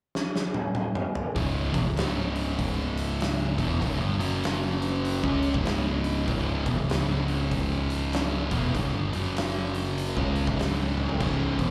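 Heavy and sludgy, this short stoner and doom metal cut at 98 BPM in C# minor opens with a fill on an oversized, low-tuned drum kit with a boomy kick, fat snare and dark cymbals, before three fuzz guitars (one up front with slapback echo, one very quiet, one double-tracked in the background) and a growly, overdriven picked bass enter together at 1.4 seconds on a swung riff moving between C#m and F#5, all heard as a live gig through a club PA with small room ambience.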